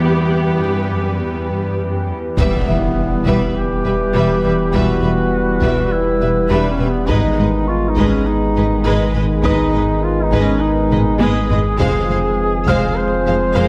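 Heard through a moderate scoring-stage reverb, this relentless, tense cut from a hybrid orchestral and electronic film score moves at 102 BPM in a straight 4/4 over Em, Abm and Fm chords, opening with a lush symphonic violin melody, a clear and intense viola accompaniment, a very quiet rich cello bass, a deep, moody detuned ambient pad with chorus and its own reverb, and an intimate concert grand piano with audible action noise, before everything expands at 2.4 s with a distant, roomy duduk melody full of scooped notes and vibrato, a smooth chamber violin second line, mellow French horns and a soft trombone section holding chords, a punchy pitch-drop sub bass doubled by woody double basses, a very quiet heavy-stick taiko ensemble with a fill at 10.9 s, and a background electronic impact lasting until 4.7 s.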